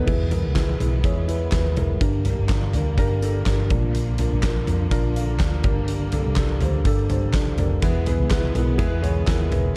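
Uplifting and anthemic, this short cut from a longer piano-driven pop piece swings lightly over a huge arena drum kit, its punchy kick, fat snare, hi-hat, handclaps, toms and crash cymbal sitting up front in a big room beside a round, foam-muted vintage electric bass. A soft, felt-muted upright piano carries the accompaniment with a mellow, intimate tone and audible action noise, while a smooth-topped studio string section holds sustained bowed chords with vibrato in the background as the harmony moves through E, Gm, Bb, Gm and back to E. At 7.8 s a jumbo steel-string acoustic guitar returns with a full-bodied picked riff, finger squeak and fresh strings, set in a dark, warm production with light studio reverb.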